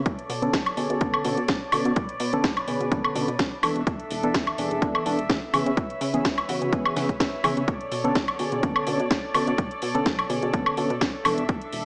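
Swung sixteenths in four-four drive this filtered disco house clip, with a punchy, tape-warm electronic kick and a house kit of cracking snare, metallic hi-hats and woodblock sitting up front in studio reverb, the hats and percussion pumping against the sidechain. Beneath them, a funky, mellow analog bass with a fast-attack filter pluck pumps through a low-pass filter. A distant, earthy chamber violin section, also pumping and filtered, holds rich bowed chords with light vibrato. From 0.4 seconds, a reedy, worn electric piano, slightly out of tune and lightly overdriven through its built-in speakers, adds accompaniment colored by phaser, sidechain pumping and a low-pass filter. The harmony moves from Bm9 to E7sus4 and C#m7 before returning to Bm9, while a filter sweep runs across the whole passage in a moderate echo-chamber reverb with a small-speaker sound, leaving a nostalgic, sensual mood.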